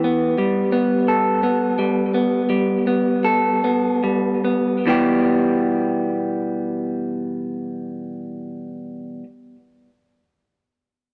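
A lone electric guitar, run through a small old amp, sits up front with a slightly broken-up, lo-fi tone, picking out arpeggios that reach from deep low notes up into the upper register. This rock fragment, cut from a longer piece, moves in a lilting 6/8 with a straight feel and carries a cathartic, cinematic mood. An analog delay trails behind the guitar's notes, while light reverb and a sense of studio ambience give the dark production some air. The opening passage rests on a Gadd9 chord and slows as it unfolds, before the second passage settles onto E minor at 4.9 seconds. The guitar rings out until 9.3 seconds, shortly before the fragment closes.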